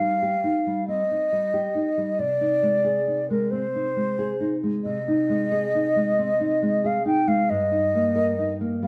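A hollow, airy silver flute sings a melancholic, solemn melody with vibrato and tongued notes over the dark, thumb-plucked nylon-string guitar in this rubato romantic duo in 12/8, both close up front in a moderate stone-room reverb that captures them playing live together in this brief excerpt.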